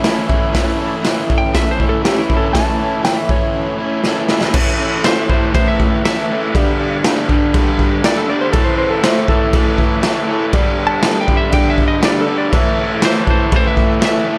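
A raw, swaggering garage rock excerpt built on a bright, overdriven, double-tracked electric guitar riff and a gritty, boomy acoustic drum kit in a small pumping room, with a dark, compressed lap steel slide melody entering at 1.4 seconds over a very quiet, buzzy combo organ holding sustained chords, all under light reverb, as a drum fill at 4.1 seconds leads into a new section where the harmony moves between A and G.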